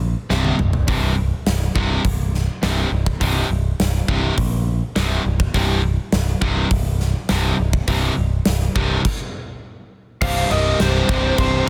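A dense, heavily limited and nearly dry mix carries this driving, heavy hard rock excerpt, where an up-front picked electric bass opens alone before a drum fill at 0.3 seconds brings in a big, airy rock kit with a punchy kick and bright cymbals, alongside a hollow-body overdriven guitar and a scooped, high-gain distorted guitar on the riff; after a stop at 9.1 seconds, a lo-fi lead guitar through a small cranked amp takes the melody at 10.2 seconds over a smooth overdriven second lead in the background and a very quiet, fat tonewheel organ with key click and fast rotary speaker.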